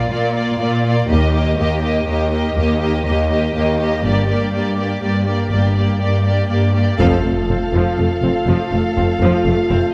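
Cinematic and adventurous at 122 BPM in 3/4, this F mixolydian passage from a longer piece builds for its first 7 seconds on lush bowed strings, with a distant, vibrato-rich violin section carrying the melody over a softer, expressive second violin line, smooth violas, up-front cellos and a focused chamber double bass section, all moving through Bb, Eb and Gm chords on a moderate scoring stage reverb. At 7.0 seconds the arrangement lands triumphantly on F with a band accent and a huge, bright impact in the background, while a mellow French horn section enters with sustained chords to carry the lift through to the end.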